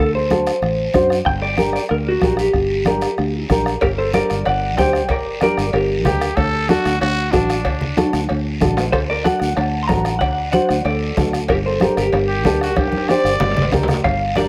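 Cumbia at a driving 188 BPM in G harmonic minor, this passionate excerpt pairs a dark, compressed clean electric guitar melody bathed in spring reverb and slapback echo with a full-bodied, thumb-plucked nylon-string guitar, a round foam-muted fingered bass, raspy guiro, soft-beater bombo, bright background congas and ringing vintage cowbell and timbales arriving at 3.8 seconds, while a gritty, growling trumpet with light vibrato cuts in around 6.0 and 12.3 seconds amid drum fills over chords moving from D7 to Gm and D.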